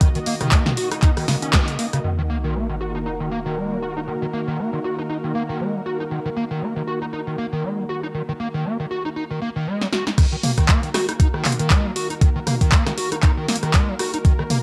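A squelchy, gritty acid bass riff with distortion and dub echo drives this trippy acid house excerpt over a lush, detuned sawtooth pad, a thumpy up-front kick and a punchy analog drum machine with claps, hats and toms; the drums fall away by 2.0 s as a sub drop lands, and a drum fill at 9.8 s brings the beat back in.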